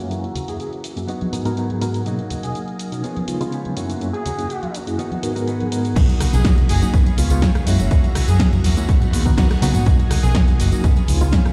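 An overdriven, punchy fingered electric bass and an up-front, tape-warm electronic kick drive the drop at 6.0 seconds in this funky, sunny filtered disco house excerpt in B major at 123 BPM, after a filter sweep that shapes the opening six seconds. Reedy electric piano with fast tremolo and phaser, a swirling sawtooth string machine in the background, a clean, compressed, picked electric guitar riff and a bright jazz-style horn section with light vibrato and dub echo ride the pumping sidechain over F#7, G#m7, Bmaj7 and C#7 chords. A punchy analog drum machine supplies snare, hi-hat, rim click, shaker and crash, while close, dry tambourine and hard-hand congas sit behind, all heard as if played on a big sound system in a bare stone room.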